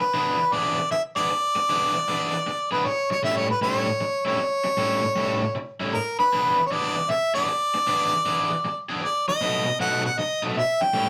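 Laid-back and swaggering, this 11.1-second blues excerpt swings at 155 BPM in E mixolydian, moving through E7, A7 and B7. An overdriven, close-miked harmonica carries the jazz-style solo melody up front with light vibrato and a soft attack, while a cranked stack electric guitar plays a picked, overdriven riff in a bright tone, also up front. The rough rehearsal-room sound has a moderate studio ambience.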